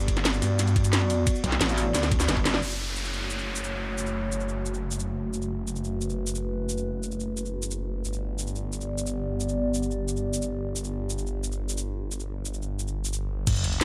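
Cut from a longer dark technical drum and bass track, this aggressive, mechanical passage opens on a drop where a thick, swirling detuned saw bass with phaser and overdrive pumps against a moody analog pad, while an up-front kit of cracking snare, metallic hats, ride, crash and shaker drives over a knocking electronic kick. A bright, distorted metallic wobble bass bursts in from 1.4 to 2.6 seconds during a drum fill that ends on a band accent, after which a downlifter and sub drop usher in a longer stretch over F#m and G chords. The kick returns only for an impact at 13.5 seconds, all set in light reverb.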